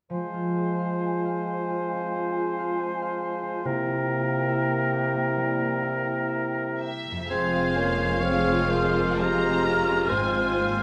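Classical and elegiac, this brief excerpt unfolds in F minor at a rubato 57-72 BPM, moving from F minor to C7 and back. A dark clarinet, a hollow silver flute and a warm oboe weave second lines while a present bassoon accompanies, over mellow French horn chords and ringing harp arpeggios from the start. A distant violin section takes the melody at 6.8 s, and at 7.3 s a second violin section with expressive portamento, violas and a focused cello section fill in the background as double basses join beneath, all in a moderate recital-hall reverb.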